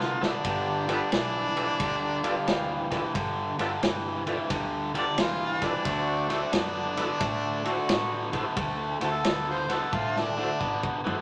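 A moderate studio reverb gives this soulful, laid-back electric blues shuffle a snug room sound, cut from a longer piece and swinging easily in four. Up front, a vintage-toned harmonica with gentle overdrive and light vibrato carries the solo melody throughout, full of tongue slaps and scooped notes in a jazz style. Beside it, a biting overdriven guitar works a picked riff, while a dark, round, foam-muted electric bass sits low beneath it. The acoustic drum kit sounds gritty and saturated, with a punchy kick, medium-tuned snare, dark ride cymbal and toms, opening with a short fill and closing on another from 9.9 seconds. In the background a full tonewheel organ adds lightly overdriven accompaniment through a slow rotary speaker and chorus vibrato, and a clear horn section punches ensemble stabs from 0.4 to 8.4 seconds over a move from G7 to D7.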